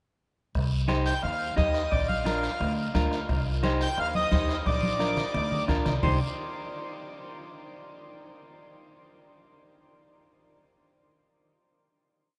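A raspy, distant guiro opens this short, driving cumbia at 0.5 s. Within moments a growly pizzicato upright bass, a soft-beaten bombo and damped background congas settle into the danceable groove, joined by clean triad chords on an up-front semi-hollow electric guitar and a reedy, full accordion carrying a motif-based melody. A drum fill arrives at 4.7 s over the alternating C minor and B-flat harmony before everything comes to rest on a final chord at 6.0 s, all bathed in a huge, echoing reverb that suggests a vast space.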